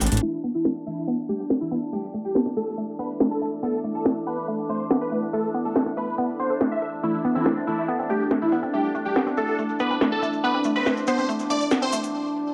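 A straight 4/4 pulse from an up-front electronic drum kit, with a cracking snare and metallic hats, drives this intense psychedelic trance excerpt, joined by a grainy cabasa in the background and a bright, resonant drone of moving overtones. A woody, wave-folded pluck riff with delay and a huge, thick supersaw melody with phaser and delay sit on top, while a deep, moody ambient pad enters at 2.0 seconds and an aggressive, very quiet wobble bass surfaces in brief bursts from 7.4 seconds. Filter sweeps run through the passage, the mix sits in a lush hall reverb, and a short break closes it at 12.1 seconds.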